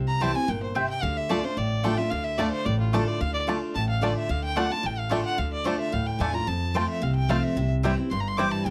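A straight 4/4 pulse at 220 BPM drives this haunting, rustic bluegrass excerpt in D minor, anchored by an up-front, full-bodied picked steel-string acoustic guitar with audible finger squeak and a woody pizzicato upright bass. A rich, nasal, reedy fiddle carries the melody as a bowed solo throughout, a mandolin with doubled strings adds picked stabs, and a twangy, percussive banjo played with fingerpicks joins the melody in the background at 2.4 seconds. Close, detailed microphones and light reverb frame the playing as the harmony moves from C to D minor, then to F and back to C.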